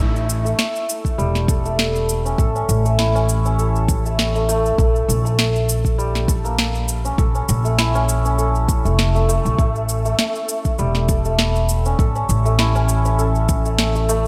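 A light reverb and small-room ambience frame this short organic downtempo piece, cut from a longer track, at 100 BPM in 4/4 with a gentle 16th-note swing. A hammered santur plays arpeggios up front across the whole passage, its shimmering, ringing tone softened by a low-pass filter and trailed by digital delay and shimmer reverb. Beneath it, a woody, dark upright bass with steel strings plays pizzicato, also up front, and carries a sidechain pumping that gives the low end a breathing pulse. Electronic cabasa and a sharp snare come in at 0.2 seconds, and a deep electronic kick joins at 1.0 seconds, both produced parts sitting in a small-room ambience. The harmony moves from A5 to Bb5 and back to A5, giving the piece a warm, hypnotic mood.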